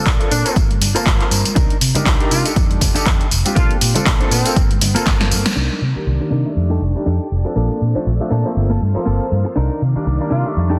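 A swung 4/4 groove at 120 BPM drives this sensual, nostalgic stretch of filtered disco house in C dorian. A punchy electronic kick and an up-front analog drum machine playing snare, handclaps, hi-hat and tambourine carry a large-room sound, with sidechain pumping on the hats and percussion, while a bright, very quiet tube shaker and congas sit beneath. A dark, round, foam-muted electric bass anchors a looping Bbmaj7, Gm11, Cm9, F13 progression. Over it, a clear grand piano with phaser and a compressed, clean picked electric guitar riff share a 12-bit sampler grit, low-pass filtering and sidechain pumping, and the bass pumps and is filtered too. A tight pop-style horn section with light vibrato and delay carries the melody in the background. After a drum fill at 5.1 seconds the drums fall away, and at 5.6 seconds a lush, full-bodied sawtooth string machine with ensemble chorus enters behind the rest, all under a dense, heavily limited modern master with light reverb.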